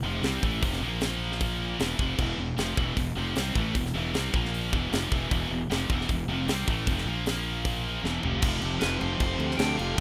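Two scooped, high-gain distorted guitars open on an aggressive heavy metal riff in E phrygian at 154 BPM, one up front and one in the background, over a growly, fuzz-overdriven fingered bass, with a tight drum kit of high-tuned snare, tight kick and bright cymbals joining at 0.2 seconds. The riff churns between Em and A#5, and after a drum fill the piece shifts at 8.4 seconds to an F chord, where a veiled, con sordino string section enters with soft-attack sustained chords in the background. A bright, high-gain lead guitar melody arrives at 8.8 seconds, all within a rough home-demo mix with light reverb, in a short passage cut from a longer piece.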